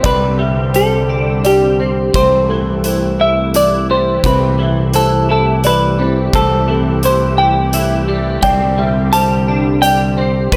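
Hopeful and soaring, this post-rock excerpt in 3/4 sets a dark, up-front semi-hollow electric guitar melody with analog delay over bright, twangy twelve-string electric guitar arpeggios, soft felt-muted upright piano arpeggios with audible action noise, a nasal, detuned brassy analog pad with chorus in the background, a growling overdriven fingered bass holding a low C, and a huge arena drum kit of hi-hat and punchy kick, all in a large studio reverb as suspended and sixth chords float over a constant C.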